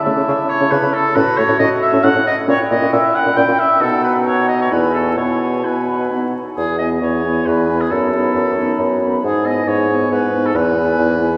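An up-front oboe carries the second line with a soft attack and roomy distance, above a vibrato-laden bassoon bass in this spirited, cheerful classical-period wind quintet movement, a quick 136 BPM in 3/4 and E major, played with rubato. Set back in the mix, an airy, hollow silver flute carries the tongued, vibrato melody, while a clear clarinet and a dark, smooth-topped French horn fill in the accompaniment, the horn and bassoon entering at 0.1 seconds. The fragment shifts into a new section at 6.6 seconds, all bathed in a cathedral-like reverb with vinyl crackle.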